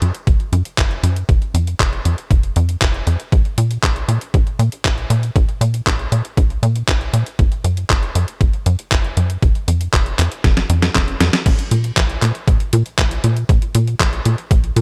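A straight 4/4 pulse at 118 BPM drives this melodramatic, nostalgic italo disco excerpt, with a thumpy, tape-warm, sampler-style electronic kick entering at 0.3 s beneath a tape-warm, detuned 8-bit drum machine whose up-front handclaps, hi-hat, crash and medium-tuned snare carry studio and gated reverb. The tight sequencer bass sits forward in the mix, a punchy, saturated blend of sawtooth, square and sine waves with wave-folding, a filter pluck, a moving notch, a fast attack and decaying notes. A drum fill at 10.4 s leads into a new section at 11.5 s, and the overall room sound stays dry.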